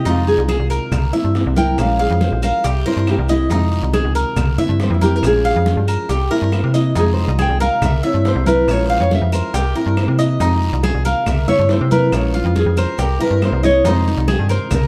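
Sultry and danceable, this Cuban son and guajira excerpt sets a fingerpicked nylon-string guitar melody, which carries a solo throughout, over a second, thumb-plucked nylon-string guitar whose small sound carries finger squeak, while a bright, metallic Cuban tres spins arpeggios on its double strings. Up front sits a snappy FM bass with a slap-like, digital attack, and in the background woody claves from 0.5 seconds, raspy guiro, grainy maracas, tight high-tuned bongos and thick-skinned congas build a percussion bed. The chords cycle steadily through Fm7, C7 and Bbm7 in a dark production with moderate studio reverb.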